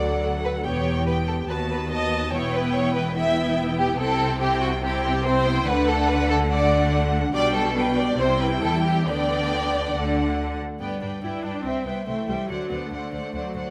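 This quick classical-period movement for string orchestra is a short passage cut from a longer piece, moving at 143 BPM in a straight 4/4 with a graceful, spirited character. The violins carry the melody high in their range with an even, smooth tone. A second violin section sits up front with a focused line beneath it, while the violas fill in the accompaniment. Lush, distant-sounding cellos and expressive, close double basses share the bass, and every section plays bowed with a rich, vibrato-laden ensemble sound. The harmony opens around D and E minor before settling firmly into G major from 4.0 s, and a new section at 10.8 s moves through G and C to land on D7 at 12.5 s. Close, detailed microphones catch the strings inside a moderate concert-hall reverberation.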